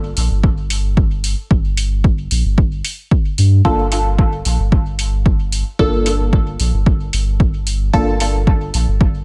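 A soft, round dub sub bass opens this nocturnal, meditative dub techno excerpt in G minor at 112 BPM, pumping with tube saturation as a tape-tinged analog electronic hi-hat enters and a punchy, overdriven electronic kick drum joins up front, before a muted, detuned sawtooth chord stab, filtered through phaser, cassette tape and dub echo, drifts in at 3.6 seconds over a single Gm7 in a dry mix.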